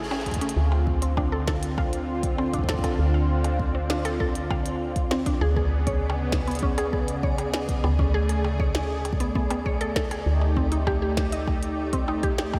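Soaked in a lush hall reverb, this dreamy, glitchy and intricate IDM piece at 99 BPM in D phrygian sets a smooth, detuned analog pad holding sustained chords up front against bright, phaser-tinged, mallet-like synth plucks spinning arpeggios through a diffuse ambient delay, a round, woody, tube-saturated FM bass, a deep electronic kick, a glitchy drum kit of clicky hi-hats, a tiny snare and percussion blips, and a flickering, grainy texture that drifts in quietly at 1.5 s.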